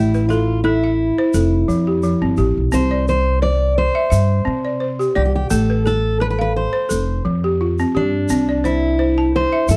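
Joyful and hypnotic, this excerpt of West African string and xylophone music moves at 86 BPM in 4/4 with a light swing on the sixteenths, in C major and tuned to A4 = 437 Hz. A fingerpicked jumbo steel-string acoustic guitar carries the melody between D4 and D5, its fresh strings giving a full-bodied tone placed up front. Alongside it, a buzzing balafon played with rubber mallets spins arpeggios from F3 to A5, while a pizzicato upright bass with steel strings adds a woody, thumpy low end close to the listener. A grainy, bright tube shaker enters at 0.1 s, sitting distant as if in a large room. The harmony cycles through A5, F, C, Am, F and C, all captured in a dry, close 1970s-style studio sound with little reverb.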